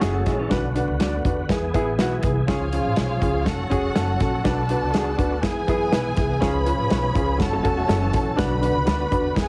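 A danceable, uptempo 1960s-style soul piece at 122 BPM opens with a woody upright piano up front in plate reverb, punchy drums from a natural country kit, a growly pizzicato upright bass and a brief dark riff from a clean hollow-body jazz guitar. Beneath them, a gritty overdriven tonewheel organ holds sustained chords in the background through chorus vibrato and a fast rotary speaker. At 2.5 seconds a lush bowed violin section enters with a smooth second line in analog delay, and the guitar riff returns at 7.5 seconds over a repeating F#m, Bm, E, C# progression, all heavily compressed like radio played from cassette tape in a moderate studio ambience.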